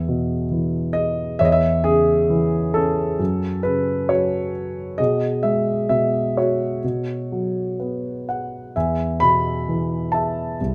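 In a rubato 4/4, this calm, peaceful classical passage for lyrical solo piano is cut from a longer piece, with a dark concert grand playing alone from 0.0 to 10.7 seconds. The piano sounds mellow and up front, with a deep bass, moving through open harmonies that settle back home by the close. A moderate small-room reverb lends the playing an intimate sense of space.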